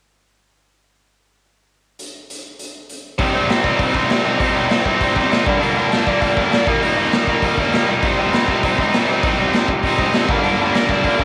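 Punk rock in C minor at 198 BPM, urgent and angry, opening with a raw garage drum kit alone at 2.0 seconds, its punchy kick, medium-tuned snare and hi-hat sounding gritty and saturated in a bright stone room with a pumping quality and a rolled-off top. At 3.2 seconds a tight, double-tracked distorted guitar enters up front with a bright, picked riff through Cm, Gm and Eb, carrying a cassette-tape grain. The whole has the feel of a home recording on cassette with light reverb, cut from a longer piece.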